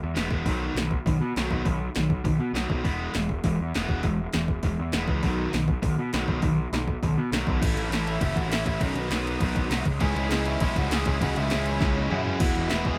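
Light reverb gives this punk rock excerpt the feel of a band playing live in one room, with an energetic and rowdy charge at 201 BPM in a straight 4/4. A fuzzed, punchy picked electric bass sits up front with a bright, direct-and-amped edge, joined almost at once by a double-tracked distorted electric guitar riff and a punchy analog drum machine whose kick and snare hit hard across crash, hi-hat and toms. The chords move through B and E before shifting to A, B and C#m as a new section opens at 7.6 seconds, where a smooth, dark overdriven lead guitar carries the melody from further back in the mix. At 10.0 seconds a second double-tracked riff guitar adds a biting yet rounded overdriven tone to the crowded wall of sound. A drum fill at 11.8 seconds drives the band back to E as the clip cuts off.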